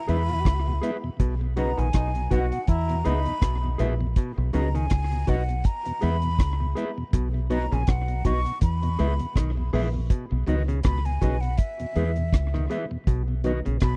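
Laid-back and sunny, this roots reggae fragment, cut from a longer piece, rides a lightly swung groove anchored by a deep, dark drum kit with a tight kick, hi-hat and rim click, and a round, foam-muted fingered bass, both sitting up front in a dry, close 1970s-style studio sound. A breathy, hollow concert flute carries the melody with tape echo, joined briefly by a clear, vintage trombone second line that stops at 3.4 seconds, while a clean electric guitar and a tonewheel organ with key click, slow rotary speaker and slapback echo fill in the accompaniment. From 1.2 seconds a stringy, percussive clav adds arpeggios as the chords alternate between E and B throughout.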